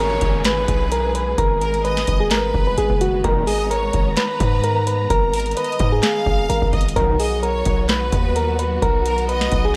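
Dark and menacing, this half-time trap excerpt opens with a soft, round electric-piano-like synth carrying the melody up front, coloured by chorus, a low-pass filter and delay. Behind it, a distant, intense violin section plays a bright second line with delay, while a lush symphonic string section holds brooding sustained chords with expressive vibrato. A hard-hitting 808-style bass supplies punchy, heavy low end, and a booming analog drum machine enters at 0.2 seconds with a deep kick, plus a crisp snare, handclaps and metallic hi-hats set in a short room. A downlifter hovers in the background until 3.2 seconds, when an edgy sync-sweep polysynth adds a brief nasal stab, returning at 7.0 seconds as the harmony moves from G#madd9 to B. Light reverb gives the mix a little space.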